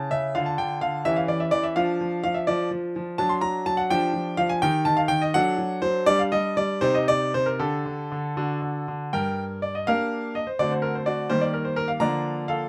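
A classical-period piano sonatina unfolds in a lilting 6/8 with an elegant yet restless character, its pulse stretched and relaxed through free rubato. A solo concert grand carries everything, its tone bright and brilliant and anchored by a deep bass, sitting up front in the sound. The opening passage moves through shifting minor harmonies before turning toward a new tonal centre at 3.2 s, with chords that lean on suspensions and colourful added tones. A fresh section begins at 9.1 s, settling into a darker minor colour before moving through a dominant seventh and a brighter major chord. Close, detailed microphones and light reverb give the instrument a natural presence in this brief passage cut from a longer piece.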